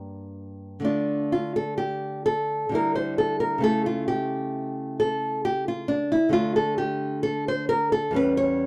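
A solo nylon-string guitar, fingerpicked and placed up front, opens this short excerpt of a grave, solemn baroque-style dance in triple time, its small, boxy tone sitting in a dry, close 1970s-style studio sound touched by light reverb. The rubato phrasing moves through a dark minor-key harmony, settling on a sparse open chord near 6.4 seconds before ending on a diminished chord as the fragment breaks off at 8.7 seconds.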